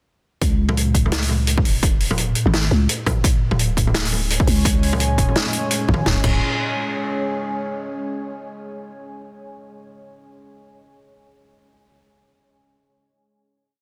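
Dark and cinematic, this short half-time drum and bass piece at 170 BPM in C# phrygian opens straight into a drop at 0.4 seconds, where a growling, buzzy 808-style bass holds long dark notes beneath a heavy, tape-warm electronic kick and a sparse vintage kit of snare, toms, hi-hat and dark crash cymbals, before a deep, moody sawtooth pad with chorus, reverb and sidechain pumping enters at 4.1 seconds and carries a final chord from 6.1 seconds in a dense, heavily limited small-room mix.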